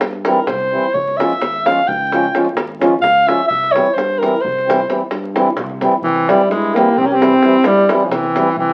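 This Balkan folk excerpt, in the manner of a Balkan wedding band, races along at 260 eighth-note beats per minute in a straight 11/8 in C phrygian dominant, with a restless, virtuosic mood. A close-miked alto saxophone carries the melody up front with vibrato and a classical poise, soloing through the opening section. Beneath it sit a reedy, round accordion, a growly overdriven electric bass and a deep davul, and a second up-front accordion line enters at 6.0 seconds, all heard through a wet studio reverb and the crackle of a very old 78 rpm record.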